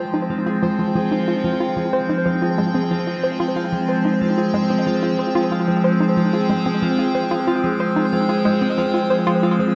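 An evolving wavetable pad opens this mysterious, expansive piece of ambient, sequencer-driven space music, holding sustained chords that morph under a phaser and its own built-in reverb, bright and up front in the mix. Alongside it from the first moment, a concert harp ripples through fingerpicked arpeggios in a higher register, its acoustic strings ringing through a tape echo. A hollow square pluck carries a bouncy riff in the lower-middle range, its detuned, wave-folded tone given a sub octave, a fast attack and a short decay, then treated with chorus and tape echo into a mellow sound. The parts sit over a single Fmadd9 chord in a straight 4/4 pulse, with the pluck falling away at 9.7 s just before the pad and harp end at 9.8 s. A cathedral reverb with a long 6.6-second tail soaks the whole dreamy mix, and the recording is cut from a longer piece.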